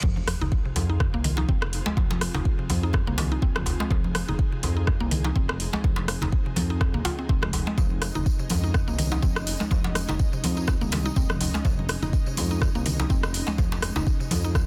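A dense, heavily limited modern mix with little reverb opens this earthy, hypnotic afro house excerpt, where a reverse cymbal and sub drop sit in the background until 2.0 seconds as a deep, up-front electronic kick, a layered deep house kit with metallic hats, rim click and tape-warm texture, tight cracking djembe and bright, hard-handed congas drive the swung groove. A smooth, saturated synth bass glides with portamento and vibrato under woody, round mallet-like plucks spinning arpeggios through chorus and delay, both pumping against the kick. Above them, an ethereal, warbling vintage pad holds sustained chords from Fm7 to Dbsus2/F, and a jingly tambourine joins at 7.8 seconds.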